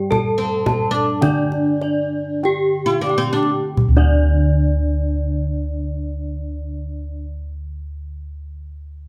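Opening on bronze metallophones and bossed gongs, this ceremonial, shimmering fragment of Javanese gamelan moves at 43 to 56 BPM in a straight 4/4 and slows through its first 3.8 seconds. A dark, smooth metallophone carries the melody up front over a full, dry, close-miked gong bass, while a boxy metallophone accompanies and a bright, very quiet metallophone and mellow, padded gongs weave arpeggios. Tight, hard-handed kendang enters at 0.1 seconds, and a woody, plectrum-plucked fretless oud with double strings adds a second line from 0.4 to 3.5 seconds, all in a live room with moderate studio reverb.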